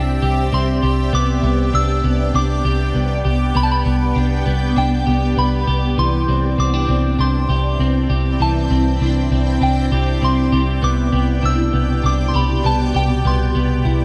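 Dark, lightly reverberant digital ambience frames this dreamy, ethereal dream pop excerpt in C major at 99 BPM, where a soft FM synth bell with chorus and tape echo carries a pure, warbling melody over a shimmering, detuned pad treated with chorus, phaser and reverb, while a slightly broken-up, compressed electric guitar picks arpeggios through analog chorus and tape echo, and a round, foam-muted vintage bass holds C2 up front beneath chords moving between Cadd9 and G/C before settling on Cmaj7 at 13.3 seconds.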